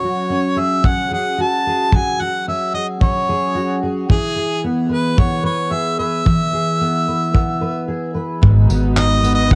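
This home recording on cassette has a moderate booth ambience and a sunny, heartfelt mood. It is a brief cut from a longer acoustic pop piece in E major, moving at 111 BPM in a straight 4/4. A clear harmonica carries the melody up front, with light vibrato and scooped notes, over a fingerpicked steel-string acoustic guitar whose double-tracked jumbo body sounds full and carries a cassette-tape tint. From 0.8 seconds a natural country drum kit joins with handclaps, tambourine and a tight kick, its small-room tone sitting prominently in the mix. The harmony moves from F#sus2 to E, and at 8.4 seconds it shifts to G#m7 as a dark, round, foam-muted electric bass enters alongside a soft-attack bowed string section, played sul tasto and kept in the background.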